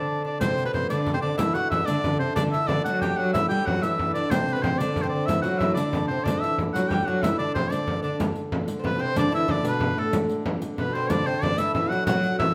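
A wet, roomy studio reverb surrounds a band playing live together in this festive, ancient-sounding medieval dance in D mixolydian at 124 BPM in 6/8, cut from a longer piece, where a bright, vibrato-laden folk shawm leads the melody up front over a plectrum-plucked, double-strung oud and a woody, airy-bowed viola da gamba on second lines, with a dark hurdy-gurdy drone in the background, a compressed, saturated frame drum and a close, dry riq with jingling shimmer joining at 0.4 s, and the tune moving into a new section at 8.2 s.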